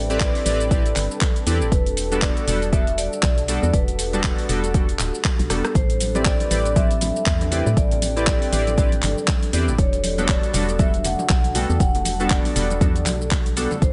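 A ringing vibraphone with a slow motor vibrato carries the melody through delay across this moody deep house excerpt at 119 BPM, swung on the sixteenths and moving between Am11 and Em11 chords. Beneath it, a hollow, organ-like FM bass and an overdriven, deep electronic kick anchor a drum kit of handclaps, hi-hat, rim click and shaker. Glossy retro polysynth stabs with tape echo, a detuned analog pad and an evolving ambient pad both pumping behind in the background, and ringing congas that enter after a drum fill at 5.5 seconds fill out the mix.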